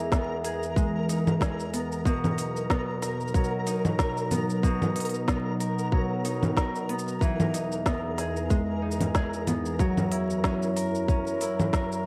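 Vinyl crackle and a modest small-room ambience frame this hopeful, pastoral folktronica excerpt, cut from a longer piece and carried by a gently swung sixteenth-note feel in four. A fingerpicked Celtic harp sits up front with ringing arpeggios trailed by delay, while a warbling, lo-fi pad beneath it sustains detuned, wave-folded chords through chorus and its own reverb, giving the backdrop a nostalgic, mellow haze. High above, a grainy, flickering granular texture shimmers softly in its reverb. The beat pairs a tight, tape-warmed electronic kick with an organic electronic kit of congas, shaker, crisp hats and a woody snare, both re-recorded in a large room and placed close to the listener. The harmony drifts from Emaj7 to Bmaj7, returns to Emaj7 at 7.2 seconds and settles on F#7 at 9.8 seconds.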